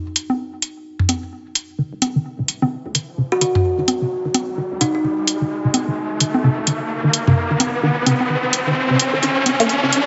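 Bathed in a lush hall reverb with its top end capped at 7.8 kHz, this quirky, sparse slice of swung minimal techno opens on up-front, tape-toned electronic hi-hats and overdriven analog congas and toms with delay. From 1.8 s a squelchy, resonant blip pluck riff with phaser begins a filter-swept build-up, and a very quiet, punchy sub bass follows at 1.9 s. They are joined at 3.2 s by an up-front riser and briefly by a woody, ringing kalimba melody with delay.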